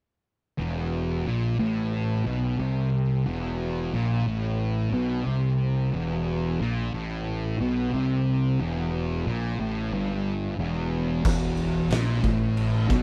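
A growly, overdriven fingered bass sits up front beneath two dark, fuzz-drenched picked guitars grinding out a hypnotic, heavy stoner and doom metal riff over Em, until an oversized low-tuned drum kit with a fat snare, punchy kick and dark cymbals crashes in at 11.2 seconds as the music shifts to E5 in this dry, short cut from a longer piece.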